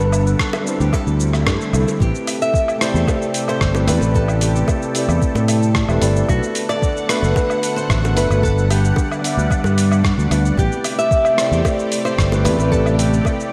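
A fingerpicked nylon-string guitar melody leads this smooth, wistful sunset chillout cut at 112 BPM in A dorian, floating over a mellow tine electric piano and a lush, thick sawtooth unison pad drifting through chorus, phaser and shimmer reverb, with an up-front fingered electric bass, a gritty sampler-style kit of hi-hat, rim click, shaker and woodblock, very quiet high-tuned bongos, a soft overdriven electronic kick entering at 0.4 seconds and a faint electronic swell at 1.3 seconds, all moving through Gmaj7, D9sus4, Am9 and Bm7 in a dreamy mix soaked in hall reverb.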